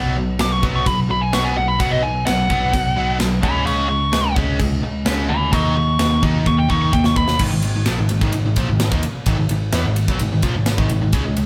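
Aggressive and heavy, this hard rock excerpt drives along at 128 BPM in a straight 4/4, settling into G# minor at 7.4 seconds. Two overdriven rhythm guitars, one biting and one distorted, sit in the background churning out a riff, while a growly, punchy picked bass anchors the low end. An up-front lead guitar with a biting edge carries the melody as a solo over shifting power chords from B5 through C#5 to D#5, and it stops at 7.4 seconds. The tight metal drum kit comes in at 0.4 seconds with a polished, airy sound, bright cymbals, a medium-tuned snare and a tight kick, and a drum fill from 6.5 seconds leads into the G# minor section. The band sounds as if playing live together in one room, with moderate studio reverb giving the whole a sense of space.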